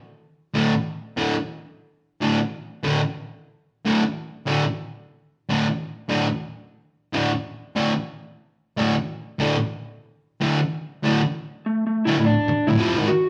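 Rock at 146 BPM with a raw, rowdy mood, this excerpt opens on a bright, double-tracked fuzz guitar riff in the low register on a D5 chord, joined near its close at 11.7 seconds by a dark, slightly broken-up slide guitar melody played with fingerpicks, both up front in a large studio room with a moderate reverb and the live feel of a band playing together.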